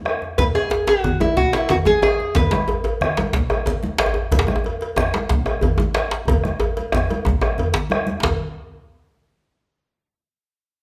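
Festive and driving, this West African drum ensemble excerpt in a straight 12/8 at 122 BPM sets a round, distant bombo, bright thin-skinned congas, a metallic cowbell and two djembes (one deep and dry in the background, the other tight and cracking up front) in a large studio with moderate reverb, while a nasal, fingerpicked slide line on lap resonator guitar rings out up front from 0.4 to 2.7 seconds before a drum fill at 6.3 seconds leads into a new section at 8.2 seconds.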